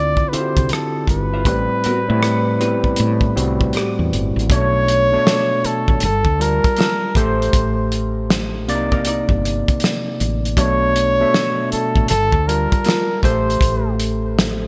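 A swung 79 BPM groove in 4/4, with sixteenths pushed to a 63% swing, drives this introspective, sultry neo-soul R&B clip: a soul drum kit with a fat snare, tight kick, hi-hat, rim clicks and gated reverb sits up front beside a round, woody fretless bass. A smooth, punchy flugelhorn with light vibrato carries the melody over a barky, gritty overdriven tine electric piano, while a dark, clean hollow-body jazz guitar with lush chorus plays a second line in the background from 0.3 seconds. Minor ninth chords such as Dm9, Bm9, Gm9 and Cm9 shift beneath a bright 1980s-style digital sheen with light small-room reverb, and the flugelhorn stops at 13.9 seconds, just before the cut.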